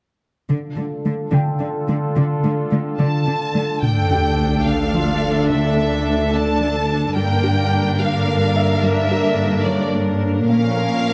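A rich, up-front cello section carries the bass of this brooding, futuristic cinematic cue in 6/8, under a detuned, warbling analog pad with chorus and a squelchy, resonant synth pluck playing arpeggios through phaser and delay in the background, while a very quiet, clear baby grand piano adds texture from 1.3 s. Lush violins take up an expressive melody with vibrato at 3.0 s, and focused violas add accompaniment from 3.8 s, where an electronic sub drop lands as an impact. A filter sweep opens the cut, the harmony moves from D minor through G minor to B-flat minor, and a moderate scoring-stage reverb surrounds the ensemble.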